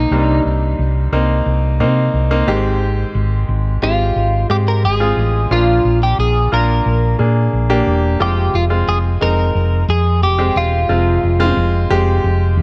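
A straight 4/4 pulse drives this short cut from a longer piano-driven pop piece, its mood driving and dramatic. A bright concert grand carries the accompaniment throughout, brilliant and polished with a deep low end and short sustain, while a hollow-body short-scale electric bass sits up front with a dark, round, amped tone. Over them a clean, picked twelve-string electric guitar plays the melody in a compressed, warm voice until it stops at 11.5 seconds, leaving piano and bass to finish together. The harmony moves from Cm7 through Abmaj7 and Bb before shifting to Fm as a new section begins at 8.2 seconds. Light reverb and a small room ambience keep the close, present sound intimate.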